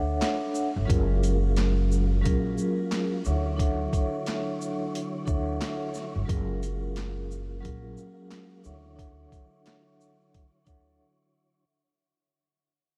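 Boom-bap hip-hop with a soulful, warm mood, this short excerpt cut from a longer piece rides a swung groove at 89 BPM in 4/4, moving between Dmaj9 and F#maj9 chords under a soft layer of vinyl crackle and light reverb. A vibraphone played with soft mallets carries the accompaniment, its ringing, metallic tone shaped by a slow motor vibrato and captured close and dry so it sits full and up front. Beneath it, a woody, growly upright bass is plucked pizzicato on steel strings, also placed up front. The sampler-style drum kit sounds pitched down, compressed and overdriven, pairing a thumpy kick with a high-tuned snare alongside handclaps, hi-hat and shaker for a gritty edge. Entering at 0.9 seconds, a mellow tonewheel organ holds round, dark sustained chords with key click, chorus vibrato and a fast rotary speaker. The whole passage fades out, with a brief break from 11.0 seconds as the bass and vibraphone stop.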